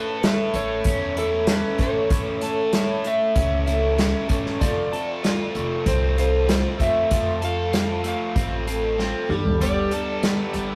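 Opening with a dark, slightly broken-up slide guitar melody soaked in tape echo over a shimmering, octave-doubled twelve-string and a biting, double-tracked overdriven riff, this open-road folk and heartland rock excerpt at 96 BPM rolls through A, F and Gadd9 as an up-front acoustic drum kit played with bundle sticks and a woody, thumpy pizzicato upright bass join in, a drum fill at 9.0 seconds ushers in a very quiet, shouting tonewheel organ on slow rotary at 9.6 seconds, and all of it sits in a rough rehearsal-room sound with a stone room reverb.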